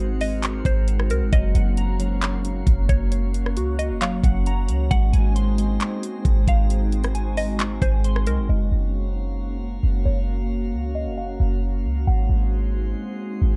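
A dark, warm production with little reverb frames this blissful, dreamy slice of atmospheric cloud-rap, cut from a longer piece and moving at 134 BPM in a half-time 4/4 feel in Gb lydian. An up-front, clean 808-style bass runs throughout, deep and boomy with a sine-like body that decays after each fast attack, beneath an ethereal FM pad holding full-bodied, mellow chords that pump against the sidechain through ensemble chorus and its own reverb. A faint, drifting glass-harmonics texture floats through the mix with calm, slowly blooming overtones. From 0.2 s a mallet-like synth pluck carries the melody with a woody, round, warbling vintage tone, run through chorus, a low-pass filter and digital delay, while a tape-tinged trap kit of knocking kick, bright hi-hats, handclaps and rim clicks sits up front. Airy, detuned digital keys add arpeggios with a noise layer and filter sweep from 1.3 s, and both they and the drums drop out around 8.5 s as the harmony, which alternates between Ab7 and Gbmaj7, moves into a sparser second section of pad, bass, pluck and texture.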